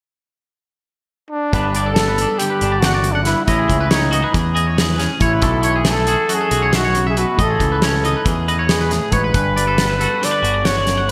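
A breathy, whispered trumpet with light vibrato and scooped notes carries the wistful melody through delay from 1.3 seconds, and at 1.5 seconds the intricate math rock and midwest emo groove in 9/8 at 276 BPM arrives: a clean hollow-body guitar shimmering with harmonic tremolo, a twangy guitar picking chorused arpeggios, a growling overdriven picked bass, and a loose indie drum kit with a fat snare and tight kick under gated reverb, all moving through Gmaj7, Amaj9#11 and B9sus4 in a bright 1980s-style digital production bathed in lush hall reverb.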